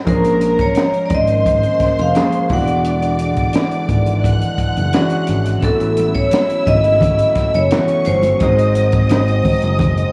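A bright, ringing vibraphone played with hard mallets carries the melody through slapback echo and plate reverb in this lush, romantic 1970s-style soul excerpt, over a distant, bowed string section, a clear grand piano, softly sustained French horn chords, a growly, punchy fingered electric bass up front and a dark, compact cocktail drum kit, with damped congas joining in the background at 6.0 s, all heard as a live gig through the venue's PA with club reverb.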